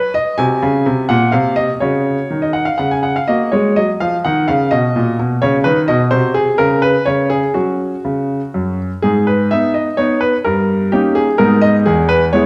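In a triple metre with a rubato feel, this playful, cheerful classical-period sonatina is cut from a longer piece and played by a solo baby grand piano that sits up front, its intimate tone ringing clearly from low E2 to G#5 with audible action noise. The opening passage moves through mostly major harmonies before turning toward the minor at 9.0 seconds, where G#m and a D#7 colour give the closing bars a shaded twist. A wet recital hall reverb with a 1.6-second decay surrounds the piano with a natural, open resonance.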